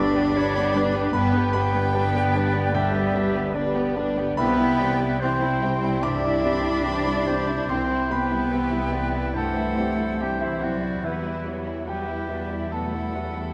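Bittersweet and sorrowful, this cinematic film-score passage for orchestra unfolds with a rubato feel, cut from a longer piece and moving from G to C and on to an Emadd9 chord at 11.0 seconds. A very quiet, veiled melody comes from the muted symphonic violin section, played con sordino with vibrato and a lush, bowed ensemble tone. Around it weave several second lines: a clear oboe in the background, an airy, metallic concert flute heard at a distance, a roomy clarinet, and a muted chamber violin section with a smooth top. The accompaniment pairs a dark, muted viola section with a polished grand piano whose short-sustain notes sit in the background. Meanwhile a very quiet French horn section holds sustained chords and a concert harp adds ringing, fingerpicked arpeggios. Underneath, a close, con sordino cello section and a soft-attack double bass section form the bass, all bathed in the wet reverb of a scoring stage.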